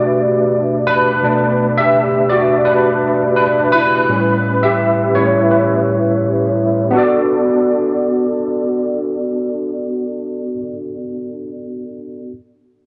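An overdriven tine electric piano opens this soul piece on its own, sounding bright, barky and gritty as it pushes through a combo amp and sits up front, with an ensemble chorus adding shimmer to its tone. The mood is silky and cinematic, moving at 84 BPM in 4/4 with a light swing on the sixteenths, in B minor and tuned slightly sharp to A4 = 445 Hz. The piano carries the whole passage as a solo, spanning from A2 up to E5. Its harmony rests on Bm7, shifts to A9 at 4.1 seconds, and returns to Bm7 at 6.9 seconds as a new section begins. A light reverb gives the room a gentle sense of space, and the recording is cut from a longer piece, ending at 12.3 seconds.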